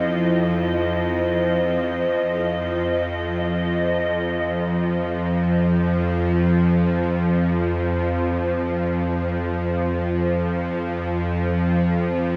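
Desolate and cavernous, this dark ambient drone opens with a very quiet, nasal analog pad fading out beneath a crystalline, airy glass pad with chorus, both gone by 4.1 s, leaving a tense, string-like bowed drone with vibrato sitting bright and up front alone until 12.4 s, all suspended in a vast, echoing space with a huge, wet reverb.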